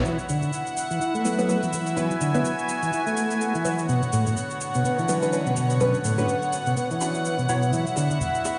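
Swung sixteenths drive this energetic, funky breakbeat fragment, with an overdriven analog shaker ticking from 0.1 seconds onward. Up front, a bowed studio string section holds sustained chords with a gut-string, period-style tone and light vibrato, moving from Esus2 to Bmadd9 and back. A vintage combo organ plays a reedy riff with heavy vibrato, roughened by 12-bit sampler grit, darkened by a low-pass filter and trailed by tape echo until 8.2 seconds. A band-passed chord stab adds nasal, detuned, wave-folded hits with a fast, decaying attack and ring-modulated edge, swirling through phaser and tape echo. Close acoustic bongos and congas slip in quietly at 8.0 seconds, while plate reverb, stone-room ambience and vinyl crackle give the whole a dusty, dull-topped sound, as if played on a big system in a bare room.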